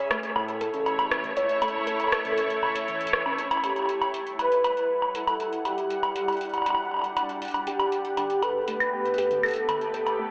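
A blurred, evolving granular cloud pad opens the excerpt, holding sustained chords that breathe with sidechain pumping and their own built-in reverb, while a harp-like synth pluck rings out soft, dark arpeggios through chorus, slapback echo and digital delay. This is intricate, glitchy IDM at 119 BPM in a straight 4/4, set in E dorian, with an up-front electro analog drum machine ticking out metallic hi-hats, rim clicks and woodblock from the start. Early on, a round, deep analog bass with tube saturation appears briefly alongside a very quiet, deep electronic kick, both gone before 2 seconds. After a drum fill at 3.4 seconds, a velvety, smooth synth lead with chorus and vibrato takes over the melody at 3.6 seconds, moving over Emadd9 and then Gadd9, as a filter sweep runs across the pad. The pluck returns at 7.7 seconds, and the whole mix sits in a lush hall reverb with a big arena quality, tinged by a telephone-like coloring.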